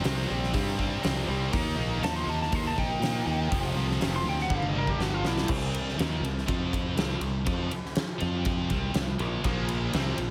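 Anthemic and powerful, this hard rock excerpt drives along at 121 BPM in a straight 4/4, cut from a longer piece. Two riffing guitars form the wall: a scooped, high-gain guitar with bright distortion runs throughout, while a cranked stack guitar with overdrive joins it for the first 5.5 seconds and returns briefly near the end. A huge arena drum kit with a fat snare and punchy kick sits up front in a big room, and a growly fingered electric bass, direct and forward in the mix, enters at 0.1 seconds. From 2.0 to 5.5 seconds a lightly driven lead guitar carries the melody, its twangy, slightly broken-up tone touched with slapback echo, as a drum fill arrives from 4.5 seconds. The harmony moves through power-chord shapes such as C5, F5 and Bb5, and the whole mix has light reverb and a heavily compressed, radio-ready sound.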